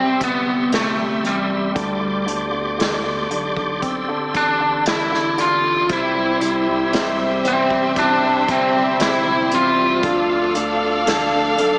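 A tender, hopeful pop ballad in C major moves at a slow 58 BPM in a straight 4/4, heard in a short cut from a longer piece. An overdriven electric lead guitar, dark and biting, sits up front carrying the melody from the start until 10.5 seconds. Beneath it a polished grand piano plays accompaniment with a slapback echo, and a reedy tonewheel organ holds sustained chords in the background, its key click and chorus vibrato spun through a fast rotary speaker. A deep, saturated sine sub bass and an acoustic drum kit played with bundle sticks, with a punchy kick and medium-tuned snare, join almost at once. At 5.9 seconds a smooth, bowed studio violin section enters with a second line, also touched by slapback echo, alongside a fingerpicked jumbo steel-string acoustic guitar whose fresh strings give full-bodied arpeggios. The chords move from C to Gsus4, back to C and on to Dmadd9, all bathed in a lush hall reverb that gives a big arena sound alongside a small speaker sound.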